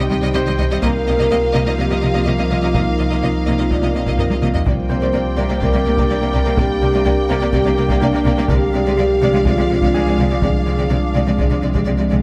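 Lush violin lines with vibrato, rich violas, intense cellos, a focused, very quiet double bass section, a dark French horn section, a detuned analog drone with chorus, a tine-like, warbling synth pluck playing arpeggios, a deep sine sub bass and a faint concert grand piano open this futuristic, vast hybrid orchestral and electronic film cue cut from a longer piece, before close, dry taiko drums with heavy sticks enter in the background at 0.8 seconds and play a fill at 4.2 seconds, all set in light reverb.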